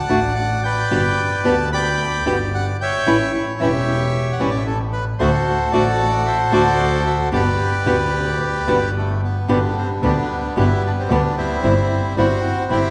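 Playful and passionate, this rubato tango excerpt sets a reedy, bright bandoneon carrying the melody up front over a clear, focused bowed double bass with vibrato and a smooth top, while a fingerpicked acoustic flamenco guitar adds warm accompaniment, all bathed in the wet reverb of a concert hall as the harmony moves from D through G, A7 and D7 back to G before settling on C over G.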